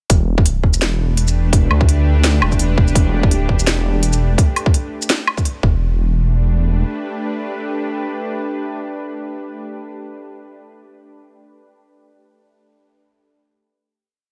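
A sparse half-time beat at 168 BPM drives this short, dark and tense half-time drum and bass piece in E minor, with a tight electronic kick, a cracking snare, crisp closed hats, shaker and a low woodblock, all up front in a small room before the drums drop out around 5.5 seconds. Underneath, a deep, rumbling detuned saw bass plays chopped phrases that beat against themselves until 6.8 seconds, while a string-like, bowed drone with slow attack, vibrato and its own reverb pumps with sidechain compression and carries slowly shifting chords. A brief E7sus4 resolves back to E minor for a final chord from 5.8 seconds, with the drone sustaining alone to 9.4 seconds in a digital ambience.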